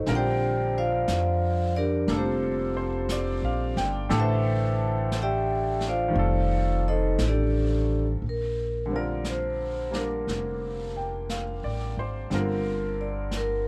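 A close, ringing vibraphone with medium hard mallets and its motor off leads this tender, late-night jazz ballad fragment, taking a solo over chords like Bb69 and Am11 until 8.2 seconds. A brilliant upright piano with long sustain and a woody, pizzicato upright bass sitting up front play alongside it from the start, and a distant, roomy brush kit on snare and hi-hat enters at 0.1 seconds. The swung, unhurried piece moves into a new section at 8.2 seconds, with light reverb and a dark, warm production throughout.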